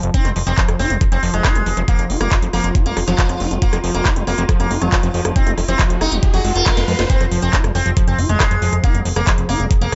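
Alien and psychedelic, this psychedelic trance passage is cut from a longer piece and runs in a straight 4/4. An up-front, knocking electronic kick leads a layered drum kit of cracking snare, metallic hi-hats, handclaps and rim clicks, both carrying a tape-warm, small-room character. Beneath them, a fat, detuned sawtooth analog bass holds the low end, while a squelchy, gritty acid bass plays a resonant riff that pumps with sidechain and trails digital delay. A plucked sitar carries the melody, its buzzing sympathetic strings shimmering through phaser and delay, and from 1.3 seconds a swarming, granular drone of detuned sine chords sits in the background. A background riser sounds from 5.1 seconds, and a drum fill and band accent lead into the drop at 7.1 seconds, all within a lightly reverberant mix with a dark top end that stops at 7.9 kHz.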